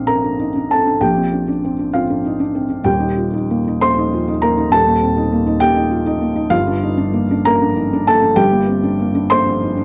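A felt-muted upright piano plays alone from the first moment, its thick-felt tone mellow and intimate, sitting up front in a dark mix with light reverb. In 6/8 with uneven, rubato beats, this peaceful, tender neoclassical minimalist fragment moves from Bbadd9 to Ebadd9 at 2.9 seconds and settles on Gm7 at 6.5 seconds. The piano spans from deep Eb1 up to C6.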